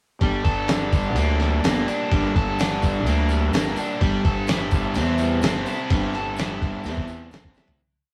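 A gritty, sampler-style drum kit sits up front in this short, hypnotic and dark psychedelic rock piece, laying down a compressed breaks groove at 126 BPM in a straight 4/4 with a thumpy kick, fat snare, ride cymbal and toms. A biting, double-tracked electric guitar plays a bright, overdriven riff of picked arpeggios, while a round fuzz bass drives a dotted figure low beneath it. Behind them, a vintage combo organ holds buzzy sustained chords bathed in spring reverb, and a jingly tambourine pattern rattles quietly in the background. In G dorian, the harmony moves from Gmadd9 to Am7/G at 4.0 seconds. The rough rehearsal-room sound carries a small-room ambience, and the piece fades out from 5.9 seconds, with a drum fill at 7.6 seconds.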